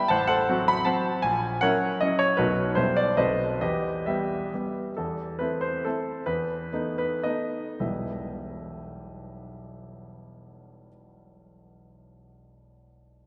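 A solo grand piano opens at once, clear and up front, playing a wistful, nostalgic romantic dance in triple time with dotted rhythms. The playing is freely rubato, spanning from deep bass notes to the upper treble as the harmony moves through diminished and dominant colours before settling onto the home minor chord. Between 4.3 and 7.8 seconds the pace slows, and a new phrase built on minor and dominant harmonies over a held bass begins around 5.0 seconds. The tonic minor chord returns at 7.8 seconds to start the final phrase. A wet church acoustic with a long, lingering tail surrounds the instrument, giving the sound a softened top end. The recording is cut from a longer piece.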